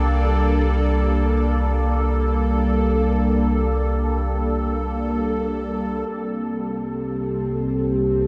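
Spacious and melancholic, this ambient passage cut from a longer piece drifts over a huge, dark reverb wash, where a bright, morphing, detuned wavetable pad sits up front, holding a Gmadd9/C chord with a phaser shimmer above a deep, round sub bass on C2. At 6.1 seconds the harmony settles onto Cm as a filter sweep moves through the pad, and at 6.3 seconds a resonant, sawtooth-edged drone with moving overtones and chorus slowly swells in to join them up front for the final seconds.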